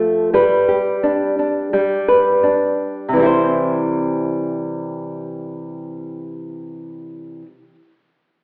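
A dark, up-front flamenco guitar rings through a wet large studio reverb with an AM radio sound, thumb-plucking an easy-going, carefree pop accompaniment in C major at 86 BPM in a straight 4/4, moving from a G chord to C at 3.1 seconds in this brief cut from a longer piece.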